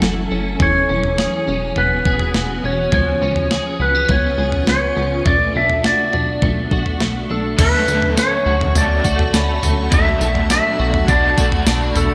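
Bright 1980s-style digital production bathed in lush hall reverb frames this melancholic, ethereal dream pop at 103 BPM, where a twangy clean lap steel guitar carries the melody up front with delay over a blurred granular cloud pad with chorus, slightly broken-up electric guitar arpeggios with chorus and delay, a punchy plucky analog bass and a crisp, overdriven 8-bit drum machine with a thumpy kick, until at 7.6 s, as the chords move from F#m7 toward Dmaj7, a double-tracked crunchy overdriven guitar with tremolo and a faint, metallic vibraphone with delay join the fragment.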